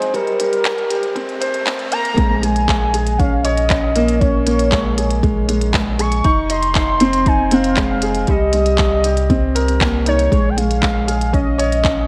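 Light reverb and digital ambience frame this cinematic, melancholic excerpt of piano and strings electronica in Bb dorian at 118 BPM, which opens with a brief build-up: a riser sits in the background while a filter sweep shapes the soft synth lead until the drop lands at 2.2 seconds. A felt-muted upright piano, intimate and up front with delay, carries the riff. A velvety, chorused synth lead with vibrato and portamento sings the melody over a round sine sub bass that pumps with sidechain. A deep, layered electronic kick and a drum kit with crisp hats and handclaps, re-recorded in a large room, drive the Bbm7, Fm7 and Cm7 changes.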